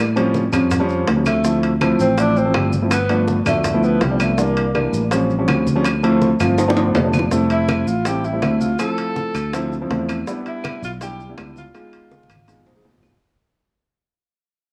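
A straight 4/4 groove at 163 BPM carries this sunny, lively Afro-Cuban jazz excerpt from a longer piece, built on a hand-percussion bed of low-tuned, thick-skinned congas, tight, high-pitched bongos set close and dry, woody claves heard at a distance, and grainy, saturated maracas, with ringing metal-shelled timbales sitting a little more forward. Up front, a round, directly amped fingered electric bass anchors the low end while a grand piano comps in an intimate, natural tone, its action noise audible. A mellow tenor saxophone takes the lead from 1.3 seconds, playing a jazz-style solo with a soft subtone and light vibrato, sounding distant and roomy through a cassette-tape character and tape echo. A drum fill at 6.2 seconds leads into a second section at 7.3 seconds, where the harmony shifts and the whole piece begins to fade out, closing with another drum fill. The sound has a homespun cassette quality, with light reverb and a small-room ambience.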